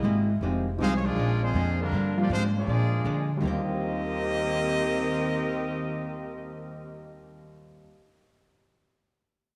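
A dreamy mix soaked in plate reverb carries this energetic big band swing, cut from a longer piece, with a bright, tight trumpet section up front leading the melody through tape echo while a mellow, distant trombone section shapes a second line behind it. Pizzicato upright bass with a woody tone anchors the groove, joined in the background by a clean, compressed hollow-body archtop guitar and a polished upright piano that enters at 0.4 seconds. The horns stop at 7.2 seconds, and the rhythm players carry on briefly to the end.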